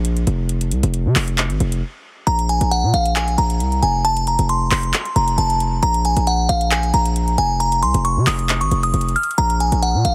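A dry, heavily compressed sound with a radio-like squeeze frames this menacing, hard-hitting trap excerpt cut from a longer piece, moving with a half-time feel. It opens on a break of 808-style bass and an electronic trap kit, where the drums' metallic hats and handclaps carry a small-room character. The bass sits up front, punchy and heavy, a sine tone with a noise layer, fast attack and decaying tail, rumbling low beneath everything. At 2.3 s a glassy FM synth bell enters high and up front, its crystalline, full-bodied tone brightened by chorus and shaped by a low-pass filter, with a long release. The harmony moves between Bb5 and F, with chordless stretches between them.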